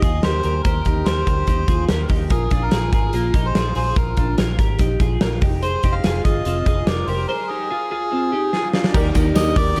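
A straight 4/4 beat at 145 BPM drives this bright, youthful jangly indie pop excerpt in Eb major, where a punchy, up-front big rock drum kit and a round, foam-muted vintage fingered electric bass support twangy, compressed twelve-string electric guitar arpeggios with lush chorus and a reedy, nasal melodica melody through analog delay over Eb6, Bb7sus4 and Fm7, until a drum fill at 8.5 seconds leads into Ebmaj7 at 8.9 seconds, where a woody, slightly detuned upright piano, a very quiet phased organ-string ensemble holding sustained chords and a jingly tambourine in the background join, with light reverb on the mix.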